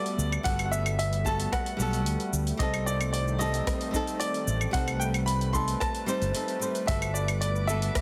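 Relaxed and warm, this sunset chillout excerpt pairs a brilliant grand piano melody, its action noise audible, with fingerpicked flamenco guitar, both carrying tape echo, over a lush, nasal detuned pad with chorus, a growly, up-front fretless bass, an overdriven deep house kit of claves, hi-hat, rim click and shaker, and a deep analog kick entering at 0.5 seconds, while a glassy, drifting harmonics texture surfaces in the background at 7.1 seconds beneath a dense, heavily limited master.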